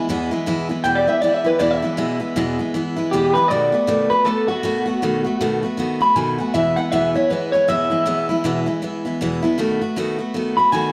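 The recording has light reverb and a small room ambience, with both guitars sitting up front. This rowdy, rollicking rock cut, taken from a longer piece, moves at 158 BPM in 4/4 with a 60% swing on the eighth notes, in E major. A picked steel-string acoustic guitar carries the accompaniment from the start, its full-bodied dreadnought tone spanning E2 to F#4, with audible finger squeak. At 0.8 seconds an electric guitar through a small old amp takes the melody, bright, twangy and slightly broken-up, ranging from F#4 to B5 and coloured by spring reverb and tape echo. The harmony moves between E and B7, and the clean electric solo runs through to the close at 10.9 seconds.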